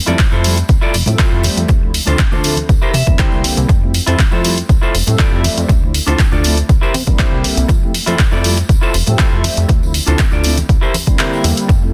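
Feel-good and joyful, this filtered disco house excerpt moves at 120 BPM in F major, cycling through Fmaj7, Dm7 and C7 inside digital ambience and a dense, heavily limited modern master. A punchy, tape-warm electronic kick sits up front beside analog drum-machine handclaps and hi-hat, with hard-hand tambourine and congas close, dry and in the background, while a funky, plucky analog bass blends sawtooth, square and triangle tones with ring modulation and tube saturation. Mellow, detuned synth brass with chorus and phaser holds round, dusky chords, and a dark semi-hollow guitar riff carries vintage 12-bit sampler grit, with sidechain pumping on the bass, brass, guitar, hats and percussion. Clean guitar fills appear from 2.7 seconds, and the kick drops out briefly at 11.2 seconds.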